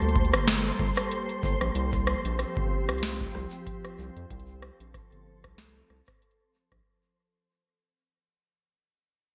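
A lightly swung 16th-note groove from a booming analog drum machine, with metallic hats, rim click and a tonal snare treated with gated reverb and delay, joined by a deep electronic kick at 0.2 s, drives this melancholic, intricate IDM excerpt, where a round, dark analog bass sits up front beneath an ethereal, chorused FM pad with 12-bit sampler grit moving from Gmadd9 to Csus4, a grainy, flickering granular texture shimmers high above, and the bright 1980s-style digital production fades out across the whole clip.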